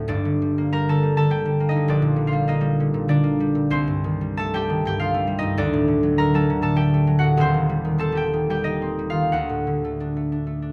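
In a loose, rubato 3/4 at 98 BPM with uneven beats, this wistful, mysterious classical excerpt for solo concert harp in G minor places the fingerpicked, ringing, warm strings up front across a span from Eb1 to Bb5, moving through Gm, Gm/Bb, Am7b5/C, D and Cm/Eb over its 10.7 seconds, captured by close, detailed microphones with light reverb.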